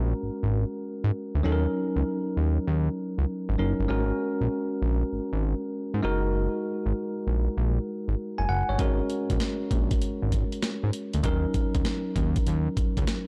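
Dark, tape-saturated production with light digital reverb gives this short R&B excerpt in the new jack swing style a punchy, confident character. At 98 BPM in 4/4 with a 16th-note swing, a bell-like tine electric piano carries the accompaniment from the start, its bright, clean tone heard as if through built-in speakers and sitting up front. Beneath it, a fat analog bass built from detuned sawtooth waves brings a thick, saturated low end, with a fast-attack filter pluck that sustains and evolves. The harmony moves through Ab9sus4, Ebm7 and Gb69 before circling back. At 8.8 seconds a compressed, gritty sampler-style breakbeat kit arrives up front with a thumpy kick, medium-tuned snare and hi-hat. It drives the passage alongside the electric piano through to 13.3 seconds, while the bass drops out just before, at 13.0.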